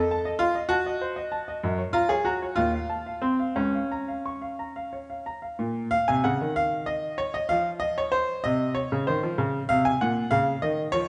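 A clear baby grand piano opens alone on a rootless dominant harmony, playing a short fragment of a classical-period sonatina in B-flat minor that feels elegant and serious. The tempo is slow and flexible, around 59-65 dotted-quarter beats per minute in 6/8 with rubato, and the phrase is stated twice, ranging from low Db2 up to Db6 before settling on the tonic chord at 9.4 seconds. The piano sounds natural and up front with short sustain, set in a moderate recital hall reverb with a 1.6-second decay and tuned slightly low to A4 = 436 Hz.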